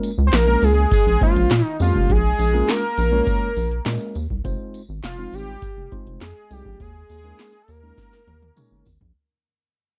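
A straight 4/4 groove from an analog drum machine drives this slick, funky early-eighties boogie funk fragment, with a deep kick, punchy snare, metallic hats, handclaps and toms, a jingly tambourine tucked in the background, and a rubbery, bouncy square-wave bass up front. A fat, detuned sawtooth lead with vibrato and slapback echo carries the melody over a worn, slightly out-of-tune tine electric piano run through a phaser, as the chords move from Bbm7 through Fm7 to Eb7sus4. The dry, close studio sound fades out across the whole passage, and a drum fill arrives at 8.0 seconds.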